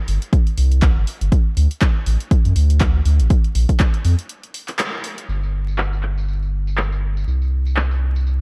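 Dark, warm production with vinyl crackle frames this sunny, relaxed deep house excerpt at 121 BPM with a swung 16th feel, where a round, deep analog bass with tube saturation and sidechain pumping sits up front beside an overdriven analog drum machine of handclaps, hi-hat and tambourine under low-pass filtering, while a punchy, overdriven electronic kick plays until 3.9 s, ahead of a break at 4.3 s and a band accent at 4.8 s that lead into the second section.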